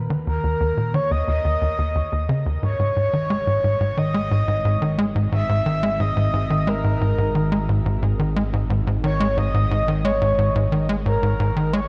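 A straight 4/4 pulse at 89 BPM drives this hypnotic, cosmic stretch of ambient, sequencer-driven space music, cut from a longer piece, where a punchy, nasal sequencer bass riff with a filter pluck and tape echo sits up front over a sustained analog drone shaped by slow attack and pulse-width modulation, while a breathy, flute-like synth lead with vibrato, chorus and tape echo carries the melody from 0.3 s, set within a dark, wet plate reverb with a 3.5-second tail.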